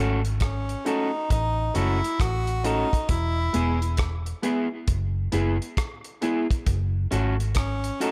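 A bright, slightly broken-up electric guitar with a twangy edge opens this laid-back, serious roots reggae excerpt, sounding together with a clear concert grand piano playing stabs and a dark, foam-muted fingered electric bass that sits round and punchy up front. The guitar's accompaniment carries a tape echo, while the piano has a smooth, vintage character with deep bass. A cloth-damped, thuddy drum kit enters at 0.2 seconds with hi-hat, a tight kick and rim click, its rolled-off top giving a warm, small-room feel. At 0.4 seconds a close-miked tenor saxophone takes the melody with vibrato in a pop style, also treated with tape echo and placed up front. The harmony moves from F#m to E and back to F#m over a swung sixteenth-note feel, all set in light reverb and small room ambience.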